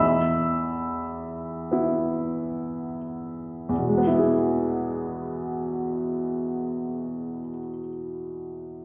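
A wet recital hall reverb with a 1.7-second decay surrounds this brief excerpt, and the room is heard from further back, while the baby grand piano itself sits up front with a warm, open tone and long sustain. It is a romantic classical nocturne for solo piano in E major, serene and nostalgic, moving in a slow 12/8 at 32 beats per minute counted in dotted quarters. The playing is rubato, and the opening passage slows down through its first 3.7 seconds over an E5 chord. At 3.7 seconds a second section begins on an E chord and carries the excerpt through to 8.8 seconds. The piano spans E2 to E6, and the fragment is cut from a longer piece.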